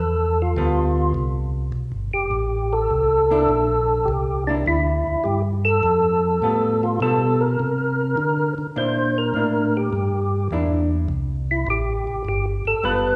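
A swinging 103 BPM groove in 4/4 drives this greasy soul jazz organ trio fragment, where a fat, percussive tonewheel organ with key click, chorus vibrato and slow rotary speaker carries the melody up front over a round, dark organ bass line, joined at 0.6 seconds by a picked, hollow-body jazz guitar comping between G9 and C9 chords, all set in the lingering reverb of a recital hall.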